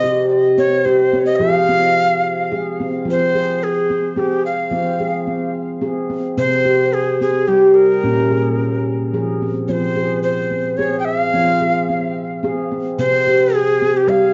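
A hushed home cassette recording with a dull top end and a wet, boxy small-room reverb frames this gentle, hypnotic world-meditation excerpt in F minor, moving at 109 BPM in a lightly swung 3/4 and tuned slightly flat of concert pitch. Up front, a ringing stainless-steel handpan struck with soft fingertips rolls out mellow arpeggios over Cm, Fm and Bbm harmonies. A breathy cedar flute in the Native American style carries the expressive melody with woody chiff, tongued notes and vibrato, its tone colored by cassette tape and trailed by tape echo.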